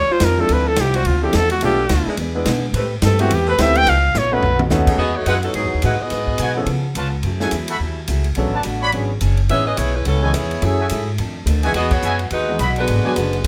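A warm, scooped-note solo trumpet leads this brassy, swinging big-band excerpt at 213 BPM, backed by a growly pizzicato upright bass, an airy drum kit with a punchy kick, a clear baby grand piano, a boxy picked acoustic guitar, and dark sustained saxophone chords, before a tight, present saxophone section takes the melody in E major at 5.0 seconds amid soft-attack mellow trumpet stabs, with a close-miked trombone section adding a second line at 12.8 seconds in a moderate club reverb.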